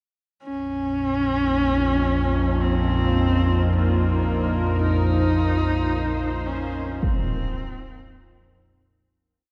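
In a straight 4/4 feel, this desolate, dark ambient drone piece rests on an up-front, detuned organ-like drone with ensemble chorus and its own reverb, while a bright, resonant sawtooth pad with chorus fades in on shifting sustained chords, a husky, clear horsehead fiddle traces a free melody with vibrato and portamento through diffuse ambient delay, and a single huge impact, low-pass filtered, lands at 7.0 seconds, the whole piece sitting in an enormous reverb of 7.7 seconds.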